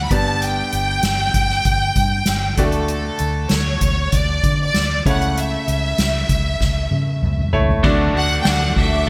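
Uplifting and anthemic, this short slice of piano-driven pop moves through G, D and A/C# before landing on D. A brilliant concert grand piano with deep bass and short sustain carries the accompaniment, while a vintage fingered electric bass adds a dark, round, foam-muted low end. Out front, a symphonic violin section sings the melody with lush, focused vibrato, and a soft-mallet drum kit with a boomy kick, dark cymbals and gated reverb plays a fill from 6.6 seconds. At 7.8 seconds a clean, compressed electric guitar riff and an expressive studio string section with portamento enter in the background, and a crisp, distant group handclap appears at 8.5 seconds. The sound is a bright 1980s-style digital production with light reverb and small room ambience.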